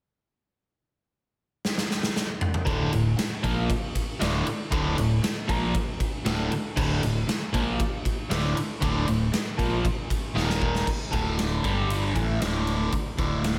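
Driving and menacing, this hard rock excerpt in a straight four opens with a drum fill from a big, natural-sounding acoustic kit at 1.6 seconds, its punchy kick, medium-tuned snare, toms and gleaming crash and ride cymbals sitting up front. At 2.7 seconds the riff arrives in force over a D minor chord: one cranked stack guitar, bright and overdriven with phaser and slapback echo, leads the picked figure while a double-tracked second stack guitar and a dark, sludgy distorted guitar push it from the background. A fingered electric bass, direct and amped with a punchy sound, anchors the low end underneath. A second drum fill over an Eb5 chord at 10.4 seconds marks the shift at 10.9 seconds, where the double-tracked guitar drops out and the harmony moves through D5 and G5 power chords. Lush hall reverb gives the whole mix a big arena sound.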